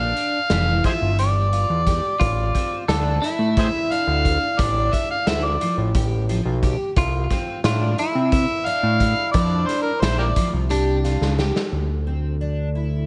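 This bright, intricate progressive instrumental opens with an overdriven harmonica carrying the melody up front, its gritty amplified tone marked by light vibrato, scooped notes and tongue slaps, with delay trailing behind it. Beneath it, a clean, compressed electric guitar picks a second line with its own delay, while a fingerpicked twelve-string acoustic guitar spins shimmering, octave-doubled arpeggios through a lush chorus. A fat analog bass sits forward in the mix with a thick sawtooth-and-square tone, a fast attack, sustained notes and a moving notch. A raw garage drum kit of hi-hat, punchy kick and medium-tuned snare drives the uneven 7/8 metre with a saturated sound and a rolled-off top, set in a bright stone room. The harmonica solo runs over a chord cycle beginning on Gm7 and moving through F6/A to C9sus4, then drops out at 10.5 seconds, and a drum fill at 11.2 seconds leads into a brief new passage on D7(no3), where the twelve-string and bass ring on until this excerpt is cut off at 13.1 seconds.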